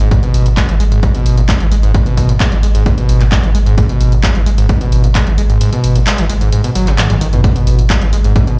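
Heard as if through a big sound system in a bare room with a large studio reverb, this intense, relentless slice of driving peak-time techno, cut from a longer piece, pushes at 131 BPM in G# minor. A squelchy, screaming sawtooth acid riff sits up front, resonant, filter-swept and distorted, with chorus, tape echo and sidechain pumping, over a deep, round sine sub bass held on G#1 through tube saturation and a low-pass filter. An analog drum machine supplies handclaps, pumping hi-hats and toms beneath a punchy, layered electronic kick with a tape-tinged body; the kick drops out at 5.6 seconds, a drum fill arrives at 7.0 seconds, and the kick returns at 7.4 seconds.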